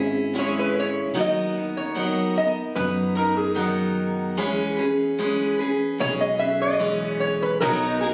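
A bright, freshly strung steel-string acoustic guitar and a woody, thumpy pizzicato upright bass open this pastoral, hopeful acoustic folk piece at 74 BPM in B major, joined at 0.4 seconds by a nasal, metallic resonator slide guitar, played with fingerpicks and a steel bar, that carries the melody up front over C#m, Bmaj7/D# and E6. At 7.6 seconds a boxy, shimmering, octave-doubled twelve-string guitar adds picked arpeggios with a touch of finger squeak, the whole captured by phone in a small room and treated with studio reverb and compression.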